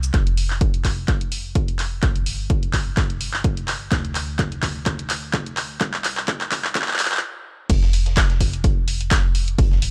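Joyful and feel-good, this piano house clip at 127 BPM with a light 16th-note swing rides an up-front electronic kick and a punchy analog drum machine of handclaps, hi-hat, shaker and crash through a filter-swept build-up and drum fill, over a dark, hollow organ-like FM bass pumping with sidechain and tube saturation in the background, before a brief stop at 7.2 seconds gives way to the drop at 7.7 seconds, where a very quiet dusty soul sampler-style kit adds gritty hi-hat and snare, the whole mix dry with a cassette-tape hardware character.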